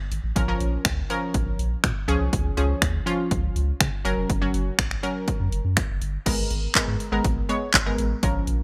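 Dance-pop excerpt at 122 BPM in G# dorian, driving and confident, with a house drum kit of punchy kick, snaps, handclaps, hi-hat and crash up front, a round, deep analog bass pumping under sidechain, and a warbling, vintage analog pluck with chorus and sidechain pumping moving through A#m, C# and F# before settling on G#madd9 at 6.3 seconds, all set in a bright 1980s-style digital ambience.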